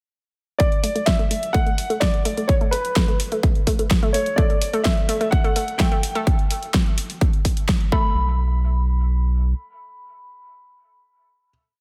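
Set in light reverb and a digital ambience, this bittersweet, expansive progressive house piece builds from 0.6 seconds on an overdriven, up-front four-on-the-floor electronic kick and a big-room dance drum kit with programmed hats and a huge snare backbeat, joined at 0.8 seconds by a thick, saturated sub bass galloping in sixteenths under sidechain pumping. A dark, mellow grand piano with digital delay carries the hook phrases, doubled in unison by a very quiet FM synth bell, while a nasal, detuned analog pluck with chorus and dub echo runs a 3-step arpeggio loop drifting against the bar, with a filter sweep on it through much of the build. The build ends at 8.2 seconds and a final hit follows, with piano and bell sustaining to the close.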